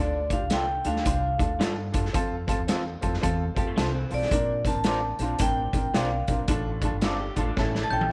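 A ringing vibraphone with a slow motor vibrato carries the melody in this driving, passionate excerpt of uptempo 1960s-style soul, set in D minor at 111 BPM with a swung 4/4 feel. Beneath it, a boxy upright piano fills out the accompaniment while a dark, woody upright bass anchors the low end, and a vintage drum kit with a punchy kick, a medium-tuned snare and a rolled-off top pumps in the small room. Two electric guitars through a small old amp sit in the background: one plays twangy, slightly broken-up stabs with tape echo, and the other adds a lo-fi, compressed riff with subtle chorus from 3.6 seconds. The chords move from Dm to F and Bbadd9, then back to Dm before turning to A. A drum fill arrives at 7.6 seconds, and a bell-like glockenspiel played with hard plastic mallets enters with a brief second line at 7.8 seconds, all within a light, small-room reverb.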